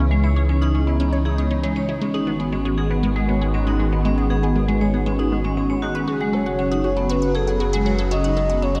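Ambient, sequencer-driven space music at 118 BPM in 4/4, hypnotic and cosmic, moving from C#m to G#m7 and on to F#m in this brief cut from a longer piece. A sweeping, evolving pad with chorus holds sustained chords over a deep, round sub bass, while a squelchy, juicy blip pluck with phaser and tape echo plays a riff, a metallic, ringing vibraphone struck with hard mallets and slow motor vibrato spins arpeggios through tape echo, and a very quiet pulsing gated texture sits far beneath. At 6.1 s a smooth, expressive synth lead with vibrato, chorus and tape echo enters with the melody, all set in a lush hall reverb with a dark, warm production.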